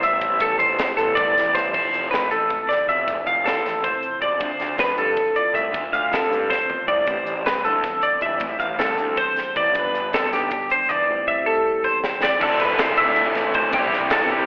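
In a fast 7/8 at 315 BPM counted in eighths, this wistful, intricate math rock and midwest emo fragment, cut from a longer piece, sets a bright, twangy twelve-string electric guitar's up-front arpeggios over a dark, fingered mellow electric guitar with phaser, a fuzzy overdriven picked bass and a crisp fusion drum kit with a high-tuned snare and punchy kick, moving through Am11, Fmaj7, Dm7 and G7 with drum fills at 6.5 and 11.8 seconds before a raw, lo-fi, double-tracked garage guitar riff enters at 12.4 seconds over Dm9 and Cmaj9, all heard as a live gig through the venue's PA with recital hall reverb and a telephone-like sound.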